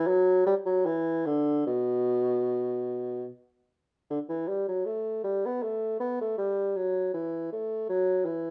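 Classical baroque-style fantasia for unaccompanied bassoon, serene and dance-like in a rubato 3/4 at 72-82 BPM, with the dark solo bassoon playing between B2 and B3 up front yet distant and roomy, its light vibrato set in light reverb across this brief excerpt cut from a longer piece, with the opening section repeating at 4.1 seconds.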